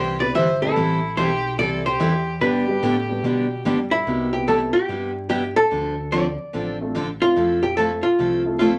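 Cheerful and down-home, this short country excerpt swings along at 145 BPM in C major, with a clean, hollow-body archtop guitar carrying the melody up front while a clear, smooth fiddle adds a second line with light vibrato until 3.6 seconds. A bright, full-bodied dreadnought acoustic is picked up front as accompaniment beside a mellow, woody upright piano, and a fat analog bass with a sawtooth filter sweep anchors the low end. Chords move from Cmaj7 through Am7 and G before a second section turns to Dm7 and Fmaj7, all set in a wet studio reverb over a bed of vinyl crackle.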